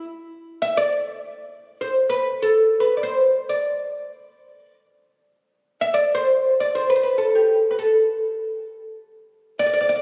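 The music unfolds in free time, drifting with an unmetered pulse through this short excerpt from a Persian modal ensemble piece. A solo oud carries the whole passage from 0.0 to 10.0 seconds, its plectrum-plucked double strings giving a woody, fretless voice that sits up front in the sound. The line stays within a compact register from G4 to E5, and the tuning rests slightly high, with A4 at 441 Hz. The mood is melancholic and soulful, like a private meditation. A wet concert hall reverb with a 2.1-second decay surrounds the instrument, and the phone capture in the room lends the sound an intimate, candid character.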